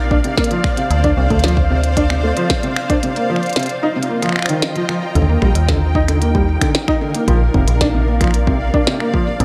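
This intricate, glitchy IDM excerpt in Eb major opens on a cloudy, evolving granular pad in its own reverb, a metallic FM bass with a fast, decaying attack sitting up front, and a very quiet bubbling texture of detuned sawtooth tone with random resonant filter steps and chorus. Within moments a felt-muted upright piano joins with soft, intimate arpeggios carried on tape echo, alongside a deep electronic kick and a glitchy kit of finger snaps, clicky hats and a tiny snare, both drum parts tape-warm. At a straight 113 BPM in 4/4, the harmony moves from Bbadd9 through Dm7 to F7sus4. A break arrives at 3.0 seconds, and the bubbling texture drops away at 5.2 seconds as the phrase repeats over Ebmaj7 before returning to Bbadd9. Light reverb and digital ambience give the whole an echo-heavy atmosphere.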